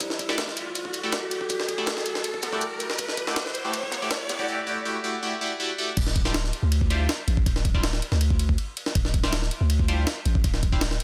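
Dense and heavily limited with a light small-room sheen, this dark, frenetic drum and bass cut at 161 BPM opens in a build-up over Em11, where a warbly, detuned tape-like pad with chorus and 12-bit grit sits under a filter sweep, a quiet saturated breakbeat kit with a rolled-off top crunches beneath, and an electronic riser climbs until 4.5 seconds. Up front throughout, a pitched-up, gritty sampler-style jungle kit drives thumpy kick, snare, ride and crash, while a nasal, band-passed sawtooth chord stab with phaser, cassette tape color and dub echo cuts through brightly. The drop at 6.0 seconds shifts to Dm11 and brings in a deep, sine-like 808-style bass that sustains and decays beneath the breaks.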